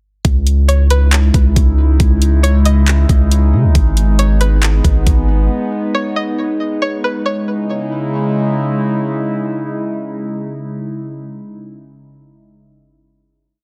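Atmospheric cloud-rap in C# minor, this short, complete piece moves at 137 BPM in a half-time feel and carries a melancholic, hazy mood. A sparse, smooth R&B-style electronic kit of knocking kick, hi-hat and handclaps sits up front beside a deep 808-style bass, whose long, sine-like sub notes follow the kick with pitch slides. Both drop out after about 5.5 seconds. A warbling, nostalgic pad of detuned sawtooth and triangle tones holds the chords, moving from C#madd9 to G#m and back, treated with chorus, phaser, reverb and sidechain pumping, and it carries on through the closing chord to 11.0 seconds. Above it, a quiet, twangy and nasal resonator pluck with a string-like bite loops a sparse melody between B4 and D#5 like a sample, shaped by a filter sweep and echoed by digital delay. The mix has a digital ambience and is mastered dense and heavily limited.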